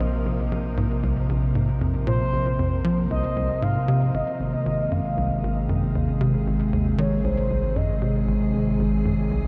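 A morphing, detuned wavetable pad, bright and up front with chorus and shimmer reverb, holds sustained chords over a punchy, filter-plucked sequencer bass riff and a deep, round sine sub bass in this cosmic, expansive fragment of sequencer-driven ambient space music at 116 BPM in 4/4. At 2.1 seconds a smooth, dark synth lead with vibrato, chorus and tape echo enters with an expressive melody that lasts until 8.1 seconds, while the harmony moves from Bbsus2 to Ab at 4.1 seconds. A huge, wet reverb with a long tail surrounds the mix, and the production is dark and warm.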